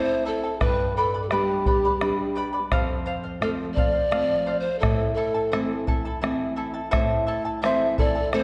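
Bathed in a wet recital-hall reverb, this melancholic yet festive Andean folk piece in A minor moves at 85 BPM in 3/4, with a breathy, hollow wooden pan flute carrying the melody through slapback echo over a bright, fingerpicked double-string charango up front, a small, thumb-plucked nylon-string guitar and a deep, dry bombo entering at 0.2 s, before a metallic steel pan struck with hard rubber sticks adds a second line at 7.7 s.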